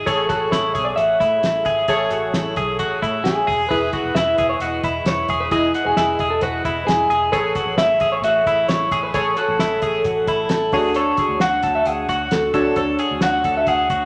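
Nostalgic and breezy, this jangly indie pop fragment, cut from a longer piece, moves in a straight 4/4 as a bright, twangy twelve-string electric guitar picks arpeggios up front through spring reverb while detuned sawtooth analog keys with chorus fill out the accompaniment. A slightly broken-up electric guitar through a small old amp carries the melody from 0.3 s, over a foam-muted, round fingered bass and a cloth-damped, thuddy drum kit with a fat snare, tight kick and dark cymbals. The harmony drifts through major-seventh chords, arriving at Emaj7 at 3.7 s as the second section opens, all set in a lush large-studio reverb.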